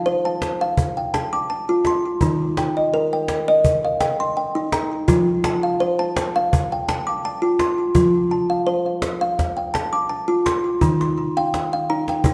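Wet recital-hall reverb with a small-room touch surrounds this gentle, dreamy excerpt of meditative world music, cut from a longer piece, moving at 84 BPM in a straight 4/4 and tuned to A4 = 442 Hz. Up front, a woody, thumb-plucked kalimba plays short arpeggios with delay from Eb3 to D6 over chords shifting between F and Eb. A snappy acoustic cajon with snares joins at 0.1 s, quieter, and a new section begins on Eb at 10.8 s.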